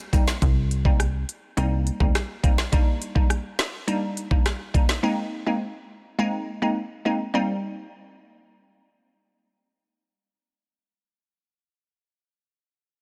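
Tough and sultry, this short dancehall clip pairs a glassy, detuned wavetable pluck with chorus, which carries the Cm7, Ebmaj7 and Abadd9 chords to 10.6 seconds, against an up-front electronic island pop kit of knocking kick, woody snare, rim click and smooth hi-hats that stops at 5.0 seconds, while a punchy, funky ring-modulated analog bass plucks low notes only until 2.1 seconds, all inside digital ambience and a dense, heavily limited modern master.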